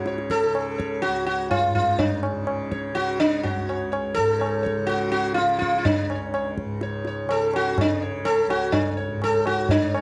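Hindustani classical music in a devotional, meditative mood, this short passage is cut from a longer piece and moves in a straight four-beat metre. The sitar carries the melody from the start, sitting up front in the mix with a round, plectrum-plucked tone whose buzzing and sympathetic strings give it a shimmering halo. Beneath it, the tanpura holds a low drone throughout, softly plucked and bright, its buzz adding a faint sheen well behind the lead. The tabla joins at 0.1 seconds with a high-tuned, short-ringing sound heard close and dry. The whole recording has the intimate, close feel of a dry 1970s-style studio session.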